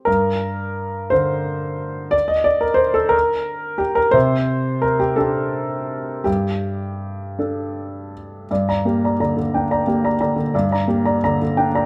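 An intimate, woody, natural upright piano plays solo and up front, its action noise audible, in this reflective, melancholic neoclassical minimalist fragment in G minor, drifting in a rubato 6/8 at 53-61 BPM in dotted quarters from Gm through Csus2 and Gsus2 before a new section returns to Gm at 8.5 seconds, all set in a moderate large-studio reverb.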